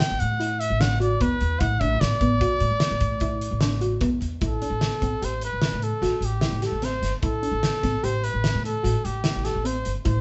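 A close-miked trumpet with light vibrato carries the melody up front in this brooding, driving progressive instrumental, a short cut from a longer piece in 7/4 at 149 BPM in A dorian, tuned to A4 = 435 Hz. A loose indie kit with a fat snare, punchy kick and hi-hat drives it in a pumping room, while a woody, growly pizzicato upright bass sits up front and a soft, round, detuned pluck with chorus adds dark arpeggios from 0.4 seconds. The band plays live in one room with moderate reverb and a muted top end, moving from Bm/A to Am7 at 4.4 seconds.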